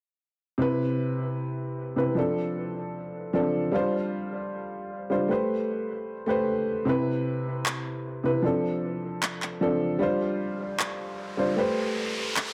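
A lightly swung 4/4 pulse at 153 BPM settles into a half-time feel in this lush, bittersweet future bass excerpt, cut from a longer piece. A dark baby grand piano carries the accompaniment from 0.6 seconds, cycling through Cmaj7, F6, G7sus4 and Am9 twice. The piano sits up front with a mellow, worn and boxy character, short sustain and audible action noise that make it feel intimate, and a dub echo trails its chords. Electronic handclaps arrive at 7.7 seconds, layered, produced and overdriven, sitting forward in the mix. An electronic riser enters at 11.0 seconds, and a moderate digital room reverb frames the whole passage.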